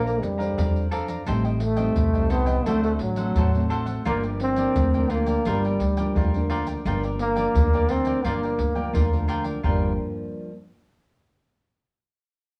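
A breathy trombone carries the melody up front in a whispered, intimate jazz style, its soft attack, scooped notes and light vibrato giving this lively, yearning samba and choro fragment a close, personal voice. Beneath it, a bright, crisp picked cavaquinho and a thumb-plucked classical nylon-string guitar with fresh strings supply the harmony at 86 BPM in G minor, moving through Bbmaj9, Am7b5, D7 and Gm7. A pizzicato upright bass on gut strings adds a woody, thumpy low end, while tube shaker, pandeiro and a tight surdo, played with hard hands in a small room, keep a straight 4/4 pulse. The whole recording carries the wear of old cassette tape, with a warbly pitch drift and a touch of light studio reverb. The full ensemble plays from the opening, and a new section arrives at 9.6 seconds, just as the parts begin to fall away.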